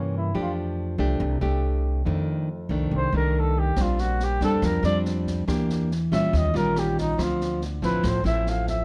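Smooth and melancholic, this 140 BPM bossa nova excerpt features a mellow flugelhorn solo with vibrato and scooped, soft-attack notes that sound distant and roomy, over up-front fingerpicked nylon-string guitar with audible finger squeak and a woody, thumpy pizzicato upright bass, moving through chords like F69, Bb69 and Dm9 under light reverb, while an open jazz drum kit with rim click, a high-tuned snare and a boomy kick joins at 3.8 seconds.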